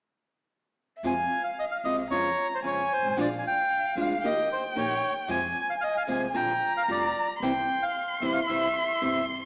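Tango excerpt in a passionate, sultry rubato mood, where after a second of silence a reedy, mid-forward bandoneon carries the melody up front while a close, expressive bowed violin sings a second line high above with vibrato and portamento, a bright fingerpicked nylon-string guitar with audible finger squeak provides accompaniment, and a softer woody, growly pizzicato upright bass anchors the low end, all set in a wet recital-hall reverb with a small-speaker sound.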